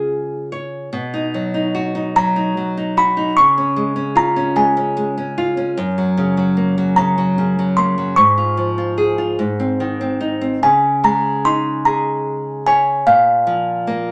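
A gentle, innocent children's lullaby in Db major, drifting in a rubato 6/8 at about 50 BPM, where a tinkling, slightly out-of-tune music box carries the high, airy melody over a bright, up-front fingerpicked nylon-string guitar accompaniment, both playing throughout this short cut from a longer piece in a moderate studio ambience, with a new section arriving at 10.6 seconds on a suspended chord.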